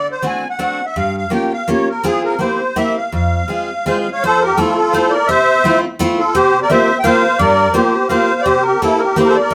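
Musette at 168 BPM in 3/4, whirling and nostalgic, with a light swing and rubato feel, moving from F harmonic minor into F major at 4.2 seconds. A reedy, shimmering musette accordion carries the melody up front while a bright, full-bodied picked steel-string acoustic guitar supplies the accompaniment, both playing throughout this 9.5-second excerpt. The two sound like a band playing live in one room, set in moderate studio reverb.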